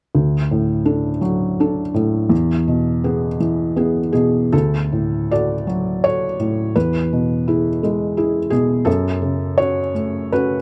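The recording is close and detailed, with little reverb, so the felt-muted upright piano sits up front and its action noise is plainly audible. This is a tender, hopeful neoclassical minimalist piano piece, cut from a longer work, moving at 83 BPM in 3/4 with a rubato feel and tuned to A4 = 437 Hz. The piano plays solo throughout, ranging from D2 to D5 with a soft, muted, mellow tone that feels intimate and natural. The harmony alternates between D and E, and a new section begins at 4.5 seconds, returning to that pairing before turning to F#m at 8.9 seconds.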